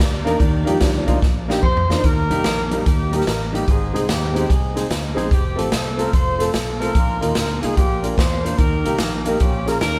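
A swinging 146 BPM groove in 4/4 drives this jubilant, uplifting uptempo gospel in Eb major, with a punchy big-band drum kit up front, a dark, round fingered electric bass and a clear concert grand piano comping with audible action noise and long sustain. Focused strings hold background chords until 2.0 s, and a tonewheel organ adds a brief touch of chords through a slow rotary speaker with chorus vibrato. During a drum fill that begins at 1.2 s, a mellow horn section with light vibrato and soft attack takes the melody from 1.6 s, all captured live in one room with light reverb.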